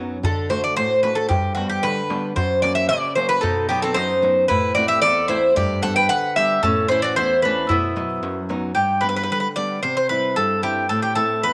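A metallic, up-front Greek bouzouki carries the melody on picked double strings with some octave-doubled courses, leading a bittersweet, moody Greek folk excerpt in 2/4 at 113 BPM. A fingerpicked flamenco guitar supports it underneath, joined by soft hand strokes on a crisp, deep metal-shelled darbuka in a live room, while a woody mandolin adds a second line in the background from 3.4 to 8.5 seconds. Moderate plate reverb surrounds the band, and the chords move through D, G, F#, B and Am before the darbuka stops at 8.6 seconds and the closing passage turns through G, C and Am.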